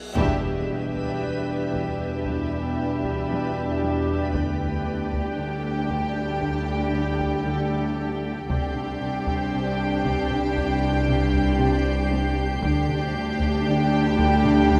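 This eerie, ominous stretch of suspense film score opens with a huge, dark reverse cymbal and impact, struck as the full ensemble hits an accent at 0.2 seconds, with a timpani stroke played with hard mallets ringing out alongside. At a slow 58 BPM in E minor, the music moves through Em7, Dsus4 and Csus2 chords while a dark violin section carries the melody, bowed sul tasto with vibrato and a woody, distant quality. Beneath it, a second violin line, violas and two cello parts, one playing a riff and one a very quiet bass, join the double basses in soft-attack sul tasto playing, with dark French horns and warm trombones holding roomy sustained chords in the background. A very quiet, warbling organ-like drone and a reversed, swelling granular texture with a bright, dreamy shimmer blend with the strings and brass, while a close, dry taiko ensemble played with hard sticks plays throughout. At 8.5 seconds a high, floating violin texture enters, adding a pure, smooth top to the moderate scoring-stage reverb that surrounds the whole passage, which is cut from a longer piece.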